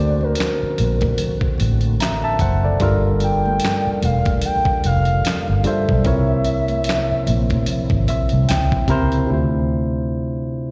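Late-night and soulful, this neo-soul R&B excerpt sets a smooth, gliding sine lead with chorus and slapback echo over a barky, lightly overdriven tine electric piano, a dark, round, foam-muted electric bass, a gritty sampler-style drum kit with thumpy kick, fat snare, hi-hat and handclaps, a very quiet overdriven tonewheel organ through a slow rotary speaker, and faint high-tuned congas, all heard through a venue's PA in a recital hall, with the electric piano taking a fill from 7.7 seconds before bass and piano carry on to the end at 10.7 seconds.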